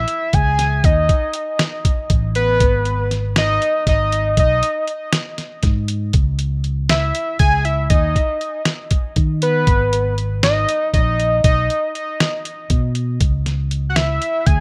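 Progressive instrumental band music in a tense, driving 7/8 at 238 BPM in eighths, cut from a longer piece: a fat, filter-swept sawtooth-and-square analog lead with a sub octave, vibrato, chorus and digital delay carries the melody over a bright, punchy fingered electric bass and a muffled, pitched-down, lo-fi sampler-style drum kit with a thumpy kick, hi-hat and snare. The harmony moves through C#m, B7, G#m and B in a dry, rough home demo mix.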